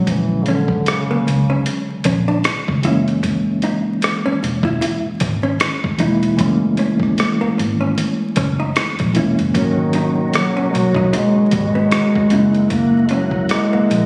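Over a swung sixteenth-note R&B and neo-soul groove, a gritty, compressed sampler-style kit with a thumpy kick, hi-hat and rim click sits up front, anchored by a round, foam-muted electric bass, while a mellow reed electric piano shimmers with fast tremolo and a hollow-body jazz guitar weaves a clean, picked second line. A dark, up-front duduk with vibrato and scooped notes voices the melody briefly at the start and returns at 9.6 seconds, its slapback echo adding depth, just after a smooth tonewheel organ enters at 9.5 seconds with key click, chorus vibrato and a slow rotary speaker. The introspective, sultry excerpt is bathed in echo-chamber reverb and vinyl crackle, with the roomy, lo-fi character of a phone recording.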